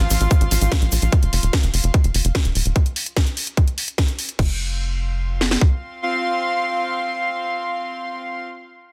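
A straight, driving 4/4 pulse at 147 BPM anchors this intense psychedelic trance passage, cut from a longer piece and opening on an F5 chord. Two layered electronic drum kits, both overdriven and set in a small room, carry the groove. One brings a tight kick and cracking snare up front; the other adds crash, hi-hat and snare with bright hats. A grainy egg shaker sits in the background for the first second. Beneath them, a punchy sequencer bass in the low register blends sawtooth and square tones into a mellow, filter-plucked line with a fast attack and decaying notes, while a filter sweep colors the bass over the opening 2.8 seconds. Up front and close, a rich chamber string section bows sul tasto with a soft attack and a pure, floating quality, pumping with sidechain and fading through the first 2.8 seconds before continuing to 8.4 seconds. The mix is dense and heavily limited, touched by light digital reverb.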